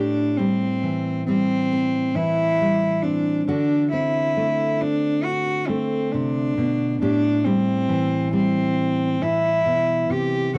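A straight 4/4 pulse at 68 BPM gives this acoustic folk-pop ballad a slow, unhurried gait, and its A dorian colouring carries a heartbroken, reflective mood. A single bowed cello sings the melody between C4 and G4 throughout the 10.6 seconds, its reedy, gut-string tone shaped by light vibrato in a period style. Beneath it, a fingerpicked nylon-string guitar supplies full-bodied accompaniment with a deep classical character, ranging from A2 to G4. The harmony moves from Am7 to D7 at 3.5 seconds and returns to Am7 at 7.0 seconds. Both instruments sit up front in a dry, close, 1970s-style studio sound touched by light reverb, in a short passage cut from a longer piece.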